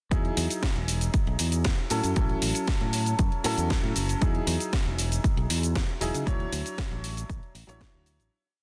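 Sunny and feel-good, this short nu-disco piece in E major moves at 117 BPM on a punchy four-on-the-floor electronic kick and a house kit with closed and open hats, shaker and a cracking snare on a disco backbeat, both tape-tinged and re-recorded in a small room. A bright, up-front fingered electric bass plays a funky syncopated line, while a boxy, intimate grand piano with audible action noise, sidechain pumping and tape echo holds chords with syncopated pushes through Emaj9, A6 and Dmaj9. The dry, dense, heavily limited mix fades out from 5.6 seconds, and the kick drops away at 7.9 seconds.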